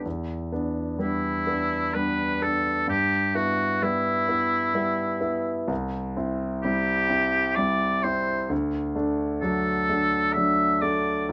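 Romantic classical excerpt for oboe and grand piano at 64 BPM in a rubato 3/4, warm and serene in mood, where the intimate concert grand opens alone with deep bass, long sustain and audible action noise, moving through Em7, Em/G, C and D, before the clear oboe enters at 1.0 seconds with light vibrato to carry the melody, all captured up front by close, detailed microphones with little reverb.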